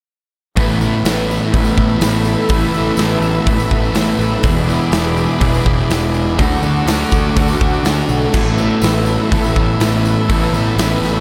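A dark, thick fuzz guitar riff sits up front in this dreamy, blissful shoegaze and dream pop excerpt, backed by a punchy overdriven fuzz bass and a big, roomy rock drum kit with bright cymbals. Behind them, a lo-fi, slightly broken-up electric guitar played through a small old amp trails reverse reverb, while a smooth, warbling vintage analog pad holds chorused chords. A very quiet, shimmering twelve-string acoustic guitar picks octave-doubled arpeggios and a jingly tambourine adds sparkle as the harmony moves from Asus2 through E7 and Dmaj7 before returning to Asus2.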